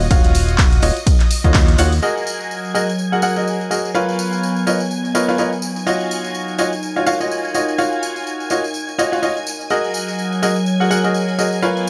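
Piano house at 125 BPM in 4/4 with a swung sixteenth-note lilt, soulful and energetic, tuned slightly low to A4 = 438 Hz. A clear, worn grand piano sits up front playing a riff with short sustain, dub echo and sidechain pumping, over shimmering vintage string-machine violins that hold soft-attack chords high above, thickened by ensemble chorus and also pumping. In the opening two seconds a plucky, funky analog bass with a filter sweep drives the low end, while a dry, punchy electronic kick and an analog drum machine with handclaps, low-pass-filtered hi-hat and ride cymbal play until about 1.7 and 2.0 seconds, with a band accent at 1.5 seconds. From 2.0 seconds a warbling, nostalgic lo-fi pad with slow attack, chorus and built-in reverb fills the middle, alongside a small-room tambourine that runs throughout. The harmony moves through Ebm9, Gb69 and Bmaj9#11 in light digital ambience, in this fragment cut from a longer piece.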